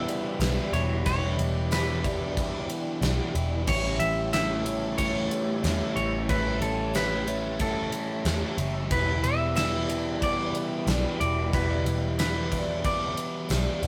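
Dreamy and hazy, this short cut from a longer shoegaze and dream pop rock piece moves in a straight 4/4 over Em7 and A7 chords, with a bright, clean semi-hollow electric guitar carrying the melody above three warm, overdriven guitar riffs set back in the mix, one of them double-tracked and one phased. A swirling, detuned sawtooth pad with phaser and chorus sustains chords in the background, while a dark, woody twelve-string acoustic shimmers with very quiet octave-doubled arpeggios and a round, punchy foam-muted bass anchors the low end. An up-front gated 80s drum kit with bright cymbals and a tight kick, joined by a distant, jingly tambourine, sits in a moderate stone room, and the rough rehearsal-room recording carries a warm, saturated glow.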